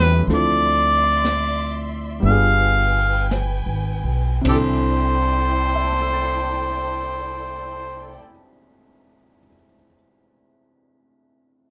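A clear, up-front harmonica sings a tender jazz-style solo with tongue slaps and scooped notes over a slow, intimate swing in 4/4 at about 50-65 BPM, slowing through the opening bars, as a woody, growly pizzicato upright bass, a naturally voiced baby grand piano, lush bowed strings with expressive vibrato, and a dark brushed drum kit sitting in the background move from Dm9 through G7b9 to a resolving C69, with the drums dropping out at 5.4 seconds and the piano carrying on alone from 8.2 to 11.7 seconds in this close, dry recording.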